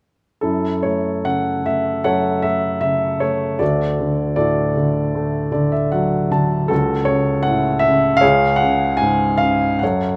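Classical solo piano in a lyrical, wistful vein, this short fragment from a longer piece carries a melancholic mood at 77 BPM, with a rubato feel and uneven beats. A dark baby grand piano plays alone from 0.4 to 10.2 seconds, its mellow tone and long sustain sitting up front, ranging from C#2 to A5. A fill on the piano between 5.1 and 6.7 seconds stands out within the single section. The harmony moves from F#m7 to D, then F#m/C# and C#5. Moderate recital hall reverb, about 1.7 seconds long, gives the instrument a sense of space.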